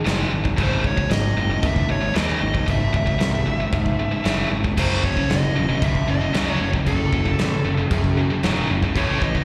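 A growly, fuzz-laden picked bass sits up front in this aggressive, relentless heavy metal excerpt at 115 BPM, driving C#m toward F#m beneath a tight, bright distorted guitar riff, a dark, smooth overdriven lead melody with slapback echo and digital delay, and an acoustic kit of china and crash cymbals, tight kick and medium-tuned snare in a pumping small room, while a scooped high-gain guitar joins in the background at 4.8 seconds, all heard as a live gig through the venue's PA with recital hall reverb.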